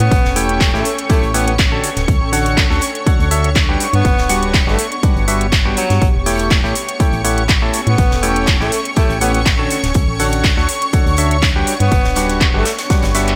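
A warm tenor saxophone melody with delay opens this joyful, euphoric, lightly swung piano house excerpt at 122 BPM in A mixolydian, over silky, bright analog strings with ensemble chorus and sidechain pumping, a hollow, dark organ-like FM bass, a house drum kit of metallic hi-hats and handclaps in gated reverb, and a cloudy, evolving granular pad in the background, before a punchy electronic kick and an airy, polished acoustic country kit of hi-hat and snare join at 0.1 s and a percussive organ stab riff with chorus, cassette tape and delay enters at 0.4 s, all over A7, Dmaj7 and Gmaj7 chords with light reverb and bright 1980s-style digital production.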